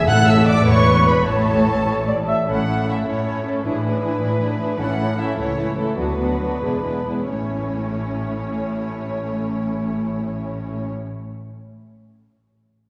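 Heard from further back in a reverberant concert hall, this cheerful, lively classical-period orchestral excerpt in A major moves in a rubato 6/8 at 85-106 BPM, with muted violins carrying the melody over a second violin line, an up-front viola accompaniment, distant cellos and veiled double basses, all bowed con sordino with vibrato, while a close, dry timpani stroke on A2 sounds briefly at 0.1 s and the pace slows between 4.2 and 7.3 s before settling on A.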